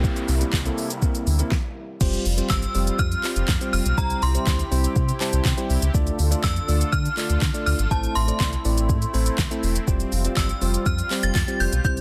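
A deep, full sub bass with an octave layer pumps up front beneath a produced electronic R&B-style drum kit of soft kick, fat snare, crisp hats, handclaps, shaker and crash in this euphoric, carefree dance-pop excerpt, where a faint noise sweep opens the passage before a brief stop at 1.5 seconds, a ringing, warbling FM synth chime carries the melody from 2.5 seconds over a bell-like tine electric piano and an airy, detuned sawtooth pad that also pumps, and a very quiet, jingly tambourine slips in at 10.4 seconds, the whole set in a dense, heavily limited, dry mix.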